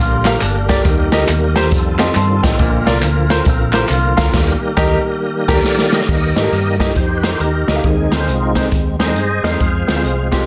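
A lightly overdriven tonewheel organ with slow rotary speaker, chorus vibrato and audible key click holds sustained chords through this reverent, uplifting uptempo gospel excerpt at 137 BPM in Eb major, swinging in 4/4, then takes a solo from 6.1 seconds. Beneath it, an up-front big-band drum kit with punchy kick and crash, a round, dark hollow-body fingered bass, and a clear concert grand with deep low end drive the groove, while group handclaps, maracas and tambourine sit close until 4.3 seconds. A twangy, clean envelope-filtered guitar adds brief second-line phrases, and a band accent leads into a drum fill before the solo, all in a dense, heavily limited mix with moderate studio reverb.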